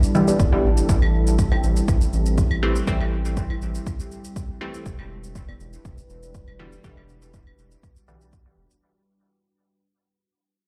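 This short dub techno excerpt, cut from a longer piece at 121 BPM in 4/4, opens on a deep, moody ambient pad holding sustained chords with slow attack and long release, colored by chorus and its own reverb, alongside an overdriven electronic shaker. Almost at once a filtered dub chord stab arrives up front, muted and sawtooth-edged with a filter pluck and fast attack, run through chorus, phaser and dub echo, while a second, detuned stab riff sits in the background with an evolving, short-decay character. A round analog bass and a layered, overdriven electronic kick enter together at 0.4 seconds, the bass dark and sustained and the kick deep and up front, with sidechain pumping breathing through the pad, stabs and bass. Tape-warm claves, re-recorded in a small room, join at 1.0 seconds and trail dub echo, with pumping of their own. The harmony moves from Em7 to Am7 and back to Em7 under a fade-out, and the whole mix carries a cavernous feel, as if played on a big sound system in a bare room with large studio reverb.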